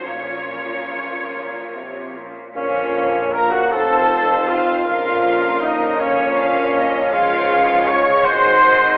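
Heard through a telephone-thin filter and a wet scoring-stage reverb, this yearning, melancholic slow romantic orchestral movement in Bb minor sways in a rubato 6/8 at 47-54 BPM. A lush, vibrato-rich violin section carries the melody over a second violin line, a rich viola accompaniment, and background cellos and double basses, while a very quiet ringing harp plays fingerpicked arpeggios. From 2.6 seconds, an airy flute, a smooth-topped cor anglais, a mellow clarinet and a soft-attack bassoon add their lines, a bright trombone section and dark French horns hold sustained chords, and a distant tuba joins the bass from 2.5 seconds, with the harmony moving from Bbm through F7 and Db to a closing Ab7.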